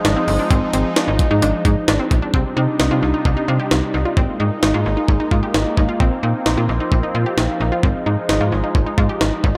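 Synth-pop at 131 BPM in C minor, this short cut from a longer piece feels driving yet melancholic, moving in a straight 4/4 through Fm7, Cmadd9, Absus2, Bbsus2 and Fm7/Ab, with the harmony shifting into a new section at 2.3 seconds. A jungle sampler-style drum kit sits up front with a gritty, compressed, pitched-up character: a thumpy kick, a high-tuned snare and hi-hat, re-recorded in a large room and sent through dub echo. Beside it, a slap-like FM bass, also up front, gives a snappy, metallic, digital attack that then decays in the low register. A lush unison pluck traces arpeggios in the middle range, its detuned sawtooth tone layered with noise and sine, and its fast filtered attack trails into dub echo. Underneath, a phased analog pad holds bright, swirling sustained chords with a soft attack, evolving through phaser and chorus. Moderate spring reverb and an echo-heavy mix give the whole passage a deep, repeating sense of space until it breaks off at 9.6 seconds.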